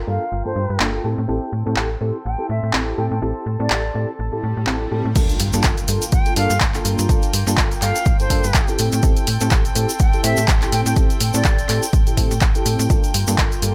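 Dark, nasal chamber strings and a snappy, metallic FM slap bass open this nostalgic, groovy slice of filtered disco house, joined at once by a pure, vibrato-laden concert flute melody and a reedy electric piano through a phaser, each pumping under sidechain compression and a low-pass filter, with delay trailing the flute. A tape-toned analog drum machine brings cabasa, handclaps, hi-hat and crash cymbal from 0.8 seconds, and a background swell and impact leads into the drop at 5.2 seconds, where an up-front punchy kick and a distant tube shaker enter over Gm7 and Am7 chords with a swung sixteenth feel. The mix is dry, and the flute falls away at 11.8 seconds.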